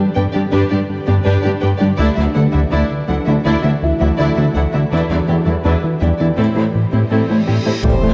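Cinematic hybrid orchestral and electronic film score at 82 BPM in A dorian, relentless and futuristic, where a glossy chorused synth bass riff drives beneath an ethereal pad with tremolo, a soft round pluck arpeggio, woody violins, focused violas and smooth background cellos over a G, Dadd9, Em7, Am7 progression. At 3.8 seconds a felt-muted upright piano adds intimate texture through tape echo, with its action noise audible. A huge reverse cymbal rises from 7.4 seconds into an impact at 7.8 seconds, where taiko drums, mellow French horns, vintage trombones and a brief double bass note arrive, followed a moment later by a distant, intense violin melody, all in a moderate scoring-stage reverb.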